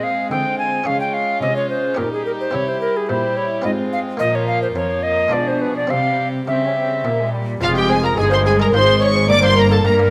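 A stormy, dramatic baroque-style concerto movement in F minor opens with an airy, close-miked tenor recorder sounding up front with woody chiff, sharing the melody with a rich violin section and joined by a darker, nasal second violin line over gut-strung period strings. A distant viola section and a close, reedy cello section fill the middle and bass, while a muted, lute-like buff-stop harpsichord sits dry in the background, the whole moving in 3/4 at 107 BPM. At 7.6 seconds a double bass section joins beneath as the passage shifts to a new section, and a moderate recital-hall reverb surrounds this short cut from a longer piece.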